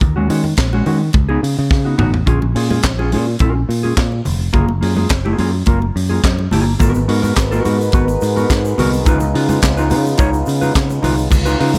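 A straight, steady disco groove in four drives this joyful, glamorous excerpt from a longer piece, set by a tight funk drum kit with a high-tuned snare, a tight kick, hi-hat, handclaps, toms and crash cymbal, recorded naturally and up front in a small room. A picked electric bass sits just as far forward, growly and punchy, while a dark, clean electric guitar played with the fingers supplies the accompaniment. Very quiet congas, bright and thin-skinned, are struck with soft hands and heard close and dry. A drum fill at 1.7 seconds leads into a longer passage where the harmony moves through seventh and ninth chords such as A#m7, F#maj9 and G#m9. At 6.8 seconds a mellow French horn section joins with sustained, classical-style chords carrying light vibrato from a distant, roomy space, alongside a grainy egg shaker set far in the background.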